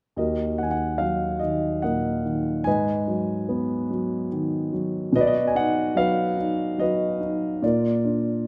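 Classical solo piano in a dark, melancholic mood, this lyrical fragment cut from a longer piece moves at a rubato 72 BPM in 3/4 and Eb harmonic minor, with a dark, mellow grand piano placed up front and intimate enough to reveal its action noise, its smooth, vintage tone spanning Eb2 to Ab5 from 0.2 to 8.5 seconds over a progression of Ebm, Abm7, B and Bb, all bathed in the wet reverb of a recital hall.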